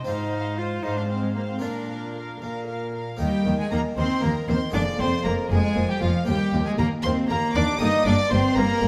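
A moderate recital-hall reverb lends this lively, festive fragment of a baroque-style concerto movement a natural sense of space. Set in a straight 6/8, it places a rich, reedy solo cello up front, carrying the melody with period-style gut-string tone. Around it, two close, warm violin sections play the upper melody and a second line with light vibrato, while a dark viola section sits distant in the background. A close-miked, dry and brilliant harpsichord with three sets of strings fills in the accompaniment, and a nasal, smooth-topped cello section supplies the bass. At 3.2 s, as the music moves into a new section, a dark double bass section joins beneath it, and the passage closes on a rootless Abmaj9#11/G chord at 7.8 s.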